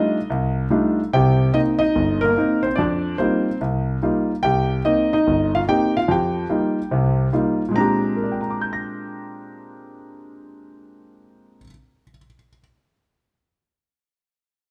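Warm and relaxed, this short solo jazz piece is cut from a longer performance and swings easily at 145 BPM in 4/4, set in Bb mixolydian. A concert grand piano carries everything alone from 0.0 to 12.6 s, ranging from a deep G1 up to Bb6. Its tone is intimate and natural, with short sustain and audible action noise, and the instrument sits up front. The harmony opens on F13, settles into an alternation of Cm7 and F9sus4, and arrives on Bb13 at 7.7 s. A stone room reverb surrounds the playing with a live, one-room feel.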